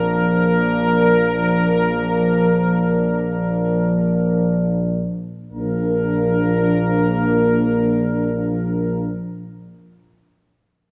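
Tender and serene, this short excerpt from a longer classical, hymn-like brass band piece in Bb major moves in free time, slowing down over its first 5.5 seconds while resting on a Bb chord. Up front, a clear trumpet section with light vibrato carries the melody on Bb, while a dark, tight French horn section sits in the background with a second line and a warm trombone section adds background accompaniment. A close-miked, mellow solo trombone also accompanies, and a distant, roomy tuba holds a low Bb bass, all heard from further back in a recital hall with a wet reverb and small room ambience.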